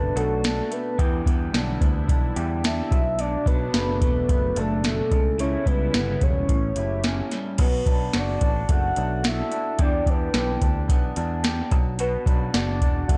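A straight 4/4 groove at 109 BPM comes from a soft vintage rhythm box that enters at 0.2 seconds, its deep kick, crisp snare, metallic hats and crash sitting up front with overdriven, 12-bit sampler grit and the air of a large room. This mellow, hazy slice of bedroom-flavoured indie pop in B minor, cut from a longer piece, rests on a round, direct picked electric bass and a twangy, slightly broken-up electric guitar played through a small old amp, its tone wobbling with warbly pitch drift and subtle chorus. Above them, a soft octave-layered synth lead carries the melody with a full-bodied, dark voice blending triangle, sine and sub-octave layers, coloured by phaser, lush chorus, vibrato and analog delay. A swirling, detuned sawtooth pad with a slow attack sustains chords in the background through phaser and chorus until it drops out at 7.6 seconds, where the second section begins. The harmony moves from Bm7 through Em7, C#m7b5 and A7 before returning to Bm7 and Em7 and settling on Bm, all in a dry, close mix.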